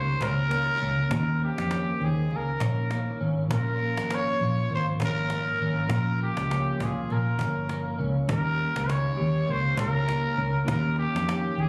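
A relaxed 100 BPM groove in 4/4 with a light swing on the sixteenths sets the pace for this mellow, hazy slice of indie and bedroom pop, cut from a longer piece. A cajon enters at 0.2 seconds, woody and close, its hard hand strokes dry with faint snares, while a vintage muted fingered electric bass sits up front, dark, round and foam-muted, anchoring the low end. Out front, a growling trumpet carries the melody, raspy and gritty yet smooth on top with a light vibrato, treated with lush chorus and slapback echo. Behind it, an electric guitar through a small old amp plays slightly broken-up, compressed picked accompaniment colored by analog chorus and a vibrato effect, and a worn, slightly out-of-tune tine electric piano with a cassette-tape tint sits in the background. The harmony moves from Eb7 to Bbm at 3.5 seconds and back to Eb7 at 8.3 seconds, all captured on a phone in a room with a light club reverb.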